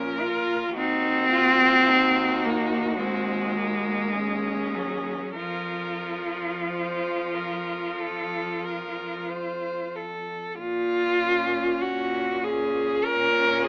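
A classical piece for cello ensemble, this short passage from a longer work moves at a slow, rubato pace with an elegiac, solemn mood. Four bowed cellos, each a single player with vibrato, sound together from start to finish across its 13.7 seconds. The melody sits up front on a rich, focused cello in its highest range, while a clear second cello carries an inner line beneath it and another clear cello, also up front, plays the accompaniment. Far below, a distant bass cello adds portamento and expressive warmth. The harmony leans on minor chords before settling back on the home chord as a brief second section begins at 10.6 seconds. Light reverb surrounds the ensemble, and the whole is colored by a narrow, AM-radio tone.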